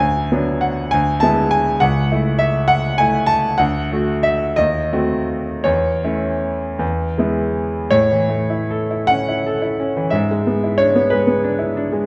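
Swaying in 6/8 with a free, rubato pulse, the dotted-quarter beat drifts between 50 and 68 BPM, giving this brief fragment of a longer romantic character piece an unhurried, breathing quality. A solo grand piano carries everything, its tone clear, smooth and slightly vintage, with a short sustain and an up-front presence. The piano ranges from C#2 up to A5, and the instrument is tuned a touch low, with A4 at 436 Hz. Set in A major, the harmony moves through Bm/D, E7/D and A/C# before passing through D and a D#dim7 to settle on A/E and then E at 6.8 seconds. A new phrase opens on A at 7.9 seconds and leans toward E7/G# as the passage breaks off at 12.1 seconds. A wet recital-hall reverb with a 1.6-second decay surrounds the piano, lending the lyrical, hopeful mood a sense of space.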